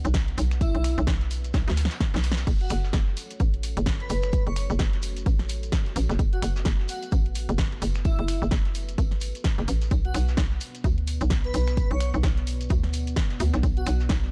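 Gritty and swaggering, this dark bass house cut runs at 129 BPM in F# minor with a 16th-note swing, moving from Bm to F#m at 2.5 seconds and back to Bm. An up-front, tube-saturated FM bass with a hollow, knocking bounce pumps beside a punchy layered electronic kick, while a house kit adds snaps, a crash, bright hats and a punchy snare, with a drum fill at 1.5 seconds. A very quiet brush kit with tambourine and a grainy shekere sit underneath, a moody square-and-saw pad breathes in the background with lush chorus and sidechain pumping, and from 0.6 seconds an airy, detuned lead drifts over it all through chorus, phaser and delay.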